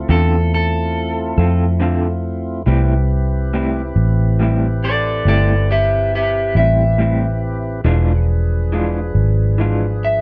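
A dark, lightly reverberant production frames this smoky, soulful slow blues fragment in A minor, moving in 12/8 at 46 BPM through Dm7, Am7 and, from 7.9 seconds, E7b9. Up front, a round, foam-muted vintage electric bass anchors the low end, while a picked electric guitar at the edge of break-up carries the melody with a slightly gritty bite. A tonewheel organ holds clean, clear sustained chords through a slow rotary speaker, and a fingered, compressed lo-fi guitar through a small old amp adds warm tremolo accompaniment.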